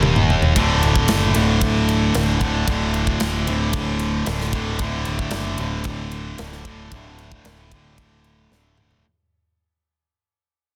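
A drum fill on a tight metal kit opens this epic, heavy metal excerpt at 113 BPM alongside two bright, up-front guitars, one overdriven and one high-gain, that drive a low riff, settling on a D5 power chord at 0.6 seconds, over a growly, direct picked bass. The polished acoustic drums ring in an airy big room, with bright cymbals, a tight kick and a medium-tuned snare carrying soft clipping. The dense, heavily limited mix sits in light reverb and fades out from 0.6 seconds, with another drum fill arriving at 8.5 seconds.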